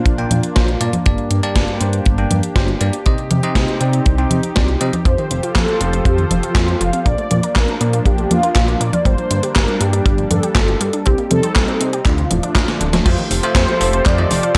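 Lightly reverberant, this melodramatic, bittersweet italo disco fragment moves at 120 BPM in a straight 4/4. A dry, tight kick anchors a glossy chorused synth bass and an up-front, overdriven 80s drum machine whose gated snare sits among congas, handclaps, hi-hat and crash cymbal, while a smooth, warbling analog pad holds sustained chords under bell-like tine electric piano stabs with delay. From 5.1 s a round, dark synth brass carries the melody through chorus and phaser as a detuned unison pluck plays arpeggios in the background, and a drum fill at 12.7 s leads into a closing passage on Fadd9 where the electric piano stabs return at 13.1 s.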